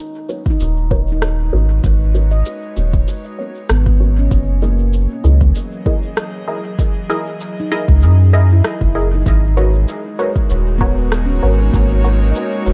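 A close, dry recording with little reverb opens this meditative, spacious ambient dub excerpt, cut from a longer piece and set at 97 BPM in 4/4 with a light 16th-note swing in G# minor. A ringing stainless-steel handpan, played with soft fingertips and close-miked, starts the arpeggios alone at 0.0 seconds, its tone roughened by vintage 12-bit sampler grit and trailed by dub echo. An airy, breathy synth pad fades in across the whole passage, its warbling, detuned chords thickened by chorus, while a muted, filtered dub chord stab with a short plucked decay adds phaser and echo. Underneath, a round, up-front sub bass holds the low end, and an overdriven, deep electronic kick, re-recorded in a small room, drops out at 11.9 seconds beside a produced cabasa and rim click that carry their own dub echo. The harmony moves from G#m11 to F#13 and back to G#m11, keeping the mood suspended and calm.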